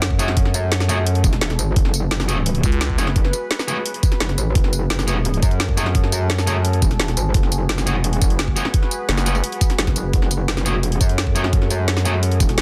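A dense, heavily limited modern master in a digital ambience frames this dark, futuristic slice of technical drum and bass, cut from a longer piece and running at 172 BPM in straight 4/4 in F# minor, tuned to A4 = 436 Hz and resting on an F#madd9 chord. A knocking, overdriven electronic kick sits up front, joined by a layered kit of woody snare, bright hats and tambourine, roughened with overdrive and set in studio reverb. The metallic wobble bass dominates the low end from E1 to F#2, aggressive and saturated, with chorus and overdrive giving it a compressed, snarling edge. Behind it, a deep, moody pad of detuned unison sawtooth and sub-octave sine holds sustained chords with a slow attack and long release, evolving under chorus, built-in reverb and sidechain pumping. A bright, picked electric guitar cuts in with distorted stabs thrown into dub echo, while a thick, growling FM bass bursts through only briefly, at 2.6 and again at 9.1 seconds.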